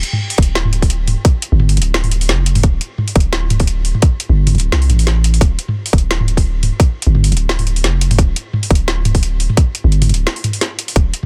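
Half-time drum and bass in D minor at 173 BPM, cinematic and tense, with a lightly swung feel, in which a deep, mellow 808-style bass sustains long sine tones from D1 to C2, a tight electronic kick joins at 0.4 s, and a layered drum kit of woody, softly clipped snare, metallic hats and toms sits up front in a dense, heavily limited mix that breaks at 10.3 s in this fragment cut from a longer piece.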